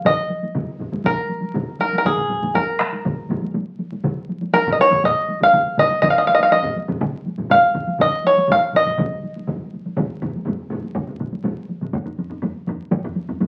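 A bright, twangy bluegrass banjo, played with fingerpicks and sitting up front, carries a percussive melody until 11.4 seconds in this driving, ceremonial Japanese traditional taiko piece in a straight 4/4. Beneath it, four taiko ensemble parts pound on: three struck with heavy sticks and heard close and dry, one of them set in the background, and a fourth struck with hard sticks in a live room. The drums carry on after the banjo stops, with two of them continuing to the end. The whole excerpt, cut from a longer piece, sits in a wet studio reverb and carries the crackle of a very old 78 rpm record.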